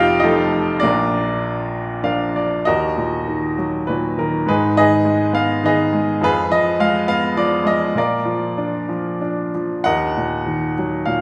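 Bittersweet and cool, this short classical excerpt features a lyrical solo piano moving in 3/4 time with a rubato feel, its tempo drifting between 91 and 106 BPM. A clear baby grand carries the whole piece alone from 0.0 to 11.2 seconds, spanning a range from F1 up to G5 with a natural tone and long sustain, placed up front in the mix. Set in Eb harmonic minor, the harmony opens on F7 and Bb before a brief piano fill from 1.7 seconds leads into the second section at 2.7 seconds. From there the chords move through Ebm, Abm, Fdim and Bb before settling back on Ebm. A wet recital hall reverb with a 1.8-second decay surrounds the instrument, giving it the resonant air of a church or concert hall, and the passage is cut from a longer work.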